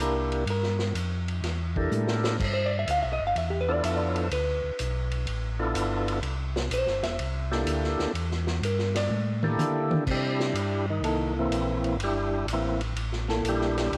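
A swinging 4/4 groove at 125 BPM drives this soulful soul jazz organ trio in C mixolydian, cut from a longer piece, with a punchy, gritty vintage drum kit entering at 0.3 seconds and adding fills under dark cymbals, while a round, mellow tonewheel organ carries the bass line through a slow rotary speaker. A dark, picked hollow-body jazz guitar takes the solo over C13 and G13 harmony until 10.1 seconds, when a full, percussive tonewheel organ with key click and slow rotary swirl steps forward for its own solo. Light small-room reverb and cassette saturation on the guitar, drums and lead organ give the home recording a worn, vintage character.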